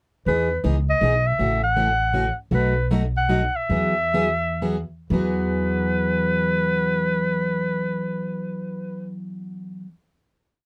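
Lively and playful, this complete short piece of acoustic string swing in the jazz manouche style moves in a swung 3/4 in E major, its tempo ranging between 111 and 159 BPM and slowing down from 2.5 to 5.1 seconds before settling on a final chord. A clear clarinet sits up front with a smooth top, vibrato and scooped notes, playing a free jazz melody over a picked parlour acoustic guitar that sounds on every beat with short, accented chords on two and three, while a woody, growly pizzicato upright bass outlines roots and fifths with walk-ups. Close, detailed microphones and light reverb give the trio an intimate presence as the harmony moves from Emaj7 through A6 and B7 to a closing Eadd9.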